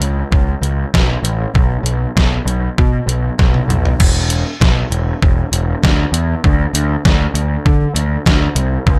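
Indie rock at 98 BPM with a carefree, wistful mood, built from an up-front, punchy picked electric bass with bright, overdriven fuzz and an up-front, detuned 8-bit drum machine with a thumpy kick, medium-tuned snare, hi-hat, toms and crash that sounds sampler-style and re-recorded in a small room, all kept dry with lossy compression artefacts, as a drum fill at 3.4 seconds leads into a new section at 4.0 seconds in this short cut from a longer piece.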